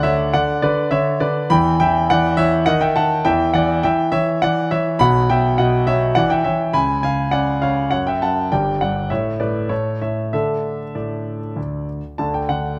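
Graceful and playful, this classical-period piano sonatina excerpt in D major moves at 102 BPM in a rubato 3/4, its solo concert grand sounding clear and intimate with deep bass, long sustain and audible action noise, captured up close in a recital hall with moderate reverb.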